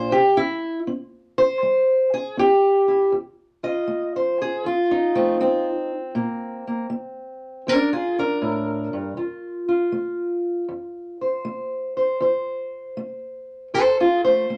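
Soulful and rollicking, this brief acoustic country blues excerpt features a lone fingerpicked steel-string acoustic guitar with a dark, boxy parlour tone, sitting up front in a wet studio ambience as it swings through a short opening passage before moving into a longer section over chords of F, Bb and back to F.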